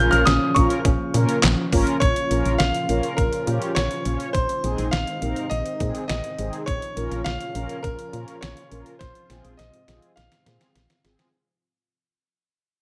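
Lightly reverberant digital ambience frames this nocturnal, driving synth-pop excerpt, where a clear, intimate grand piano with audible action noise carries the melody up front over mellow detuned synth brass, an airy evolving pad holding sustained chords in the background, a soft round pluck playing arpeggios until 2.0 s, a punchy dark FM bass, and a thumpy, overdriven 8-bit drum machine with handclaps, hi-hat and snare that plays a fill from 9.0 s as the music fades out.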